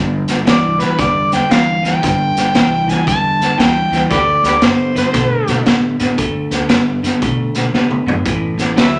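An overdriven harmonica, gritty and up front with vibrato, tongue slaps and scooped notes, takes a jazz-style solo from 0.5 to 5.6 seconds in this swaggering, rollicking electric blues shuffle at 116 BPM, cut from a longer piece. A slightly broken-up electric guitar through a small old amp plays a compressed, picked riff over a woody, thumpy pizzicato upright bass, while a crunchy, saturated breakbeat drum kit with a punchy kick and rolled-off top pumps in a small room and throws in a fill at 7.7 seconds. The chords move from G5 to D5 to A5 inside a moderate large studio reverb.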